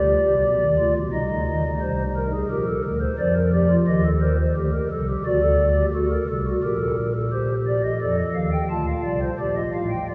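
In a straight 4/4 at 87 BPM, this contemplative, solemn fragment of a baroque-style three-part fugue is played by a solo pipe organ on a soft, hollow stopped flute with mellow romantic voicing and tremulant, sitting up front across a range from A1 to A5 within a long, wet cathedral reverb, as its harmony moves from G7 through Cm and D7 before settling on Bb at 9.4 seconds.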